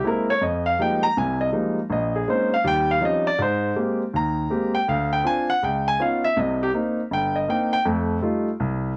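Swung eighth notes in 4/4 give this short cut from a longer solo jazz piece a relaxed, sophisticated lilt. A grand piano carries everything by itself from 0.0 to 8.9 seconds, ranging from G1 up to Bb5, with a warm, polished tone that sits up front and rings with long sustain. The harmony moves through rich extended chords, from Fm11 and Bbm11 through Eb13 and Abmaj9, then Dm7b5, Db9 and Cm7 before settling on F9. Close, detailed microphones keep the instrument present, while a light reverb adds a gentle sense of space.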